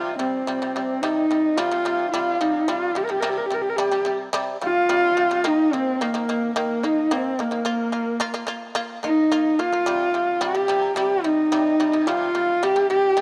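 A husky, rich horsehead fiddle sits up front and carries the melody, its single bowed voice sliding between notes with a soft attack, an expressive vibrato and the grain of horsehair strings. This is a windswept, solemn passage of Mongolian folk music in a steady, straight 4/4, cut from a longer piece. Beneath the fiddle, a shamisen plays bright, buzzing arpeggios, its plectrum-plucked, fretless tone percussive and powerful despite sitting lower in the mix. A low bamboo xiao enters at 0.1 seconds with a second line in the background, its end-blown tone breathy and mellow with rolled-off highs, a gentle waver and a soft onset. The harmony moves from C to Eb, on to Bb, and back to C, and light reverb gives the trio a sense of space.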